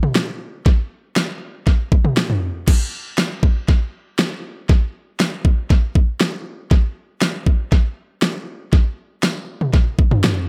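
Cool and driving, this short pop fragment at 119 BPM in a straight 4/4 features a single electronic, layered drum kit sitting up front, with a knocking kick, fat snare, toms and crash cymbal soaked in tape echo over light reverb, shifting into a new section at 2.7 seconds and running to 10.4 seconds.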